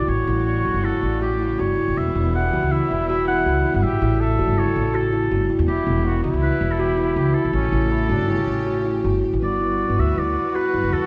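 An oboe with light vibrato carries the melody over bright, intense bowed string chords and a growly pizzicato upright bass, joined at once by a soft-attack trumpet second line and woody, ringing kalimba arpeggios, in a shimmering, restless chamber piece in 5/4 at 160 BPM in A mixolydian, cut from a longer work, where a moderate scoring-stage reverb colours a dark, warm production and the alternating A7 and Em harmony turns to Gmaj7 at 9.4 seconds.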